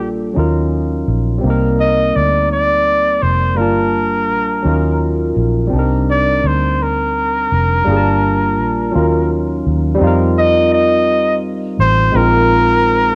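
Late-night and sultry, this slow six-eight R&B fragment sets a clear, vibrato-laced flugelhorn melody up front over a barky, lightly overdriven tine electric piano carrying subtle chorus, tape grit and plate reverb, while a dark, round, foam-muted fingered bass anchors minor ninth chords that give way at 10.0 seconds to suspended ninths, all caught with a homespun cassette character.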